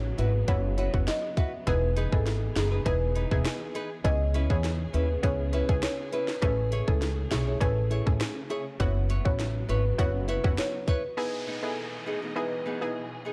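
A dark, studio-reverbed sound frames this hypnotic, bouncy dancehall excerpt at 101 BPM in a straight 4/4. Up front, a tight island pop drum kit with sharp snare, rim click and hi-hat sits over a growly, woody pizzicato upright bass, which drops out at 10.6 seconds while the drums carry on until 11.0 seconds. A rosewood marimba played with medium mallets carries the melody through tape echo, while a small, fingerpicked nylon-string guitar spins arpeggios and a detuned sawtooth analog pluck with chorus and a filter sweep adds bright, evolving accompaniment. Far in the background, a lush bowed string section holds sustained chords with vibrato and portamento, pumping under sidechain. The harmony cycles through F#7sus4, Emaj7, C#m7 and Amaj7 before settling on Emaj7 at 11.2 seconds, where an electronic downlifter closes out the passage.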